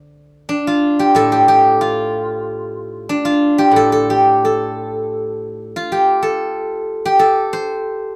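A dark, warm production with moderate studio reverb and a faint mains hum frames this brief 8.2-second passage of traditional Chinese solo plucked strings, taken from a longer piece. A steel-string zither, played with fingerpicks and placed up front, carries the music alone from A2 to D5, its bright, silvery tone ringing out in the D yu mode. The mood is contemplative and full of longing, moving at 92 BPM in 2/4 with uneven, rubato beats.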